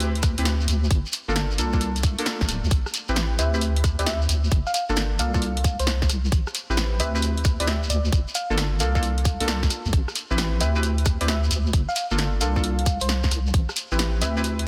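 A deep, wobbling bass with a dark chorus-thickened tone sits up front in this skippy, soulful two-step UK garage excerpt at 133 BPM in A phrygian, swung on the sixteenths and shuttling between Am9 and Gm9. A tight, layered electronic kick, a tape-warm analog drum machine with punchy snare, rim click and hi-hat, and a grainy shekere drive the groove, while full-bodied chord stabs trail dub echo and a bell-like FM electric piano enters at 3.4 s with sparkling phaser shimmer and 12-bit sampler grit. A brief electronic swell flickers in the background at 2.0 s, and light reverb and digital ambience surround everything in a dense, heavily limited master.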